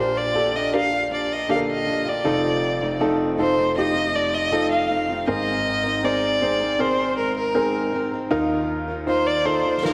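A straight 4/4 pulse at 79 BPM carries this tender, emotional pop ballad excerpt in Bb major, where a smooth, bowed solo violin with vibrato sings the melody up front over a clear, deep-bassed concert grand piano and a full-bodied jumbo steel-string acoustic guitar picking arpeggios, both touched with slapback echo. The chords move from Bb6 to F7, Abadd9 and Ebsus2, and a fat, distant snare drum enters only at 9.8 s. A wet scoring-stage reverb gives the whole a big arena sound.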